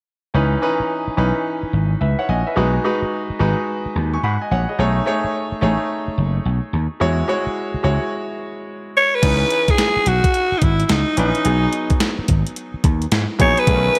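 A bright concert grand piano with short sustain and a punchy vintage slap bass open this bouncy, confident new jack swing excerpt, moving through rich chords such as C#m9, B13 and E69 with a polished 1980s-style digital sheen. At 9.0 s a raspy, gritty alto saxophone takes the lead with vibrato and scooped notes. At 9.2 s a crisp, overdriven 8-bit drum machine enters with a thumpy kick, snare, hi-hat and crash treated with gated reverb, all set in a moderate, lush hall reverb.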